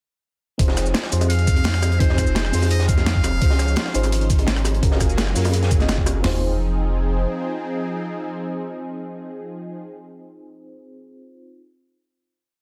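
Soulful and melancholic, this liquid drum and bass piece hits its drop at 0.6 seconds with two gritty, tape-warm sampler-style breakbeat kits (one up front with a thumpy kick in a two-step groove, the other rolling with shaker and rim) alongside a dark, saturated looped break and light, high-tuned bongos in the background, a deep, round sub bass with long gliding notes, a detuned sawtooth pad pumping under sidechain, and a warbling vintage FM electric piano with chorus, tremolo and delay, while a buzzy metal-muted trumpet offers jazz-style call phrases from 1.3 to 4.3 seconds; the drums fall away around 6.2 seconds and the final chord rings on in bass, pad and piano.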